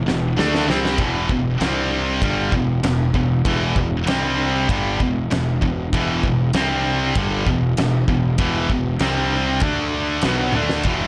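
Straight 4/4 at 97 BPM drives this epic, heavy metal passage in E minor, cut from a longer piece. A big rock drum kit with a dark, smooth tone, fat snare and punchy kick opens with a fill, moves across kick, snare, ride cymbal and toms, and adds another fill at 10.6 seconds. Two picked, distorted guitars sit up front on the riff, one high-gain and bright, the other tight. A double-tracked, overdriven guitar stays in the background and plays only until 1.0 second. Beneath them, a growly fuzz bass, direct and amped, anchors the low end, while the harmony swings between Em and C5 before climbing through D5 back to E5, all in a light reverb.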